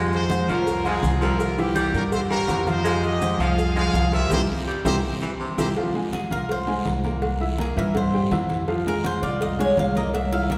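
Salsa cut from a longer piece, driving and danceable in straight 4/4, with a bright trumpet section carrying the melody over a raspy, gritty baritone saxophone second line, a brilliant baby grand piano with audible action noise, and a woody, growly pizzicato upright bass up front. Congas, a round low-tuned cowbell, ringing timbales and agogo bells, a raspy guiro and grainy maracas fill out the percussion, while the band hits an accent and a drum fill before the horns, saxophone and maracas drop out by 5.8 seconds. A metallic, double-strung Cuban tres then takes a picked solo from 6.1 seconds, all set in a lingering church reverb.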